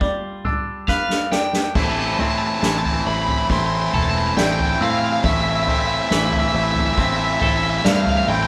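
Cathartic and melancholic, this post-rock excerpt moves at a slow 69 BPM in 4/4 with a straight feel, set in A minor and cut from a longer piece. A felt-muted upright piano plays high arpeggios in the background, its thick felt and audible action noise giving an intimate, mellow tone, while a clean, twangy electric guitar picks its own arpeggios beneath it. A round, foam-muted electric bass anchors the low end, and a distant, roomy drum kit played with soft mallets offers a punchy kick and dark cymbals. An overdriven semi-hollow guitar enters with a hollow-bodied melody at 0.9 seconds as the drums play a fill, and the harmony moves from G7 to A minor at 1.8 seconds, where an up-front, bright distorted guitar riff arrives and the music starts to build. The band sounds as if it is playing live together in a small room with moderate reverb.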